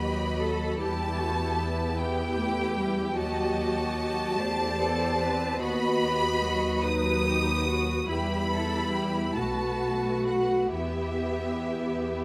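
In a rubato 6/8 at roughly 42-51 BPM in dotted quarters, this solemn, elegiac slow movement for string orchestra in E minor moves through a brief, mournful passage cut from a longer piece, circling between E minor and its dominant harmonies. A lush, focused violin section carries the vibrato-rich melody up front in the high register, while a closer, chamber-sized violin section shapes a second line beneath it and a smooth, even viola section fills in the accompaniment. A bright, intense double bass section sits forward at the bottom, with a soft-topped cello section murmuring in the background, all bowed and framed by a moderate scoring-stage reverb.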